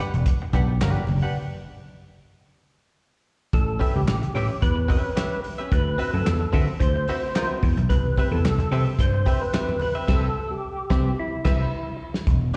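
A bright, twangy clean electric guitar opens at 0.0 seconds on a rootless Em9, its direct, compressed tone dressed in lush chorus and slapback echo. A growly, amped slap bass and a dry soul drum kit with a tight kick, dark cymbals, hi-hat, snare, handclaps and crash join almost at once, sitting up front in a cool, funky groove at 110 BPM in straight 4/4, tuned to A4 = 438 Hz. Low-tuned congas with a thick-skinned, very quiet sound touch in briefly, and a break follows before a fat, percussive tonewheel organ takes the melody at 3.5 seconds, with key click, third-harmonic percussion, chorus vibrato, a slow rotary speaker and slapback echo. The chords move through A9 and D13 to Cmaj7, where the congas return at 7.9 seconds, and the band hits an accent while the drums play a fill near the end of this cut from a longer piece. The whole performance sounds like a live gig heard through the venue's PA and captured on cassette, with a recital-hall reverb around it.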